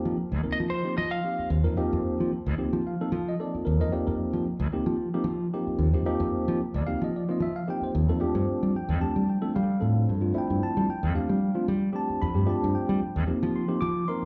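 This short cut from a longer jazz piece sounds like a live club gig heard through the venue's PA, with a light room reverb around the players. The mood is bright and slick, carried by a swung sixteenth-note feel in 4/4. A clean tine electric piano plays accompaniment throughout, heard up front through a combo amp with a phaser and slapback echo. A modern fingered electric bass sits direct and forward beneath it, with a bright, electric edge. A lightly driven lead guitar, warm, slightly broken-up, picked and compressed, flashes in only from 0.5 to 1.5 seconds with a short melodic phrase, colored by slapback echo and analog delay. The harmony rests on F9sus4, shifts to G9sus4 at 8.2 seconds, and returns to F9sus4 at 13.3 seconds.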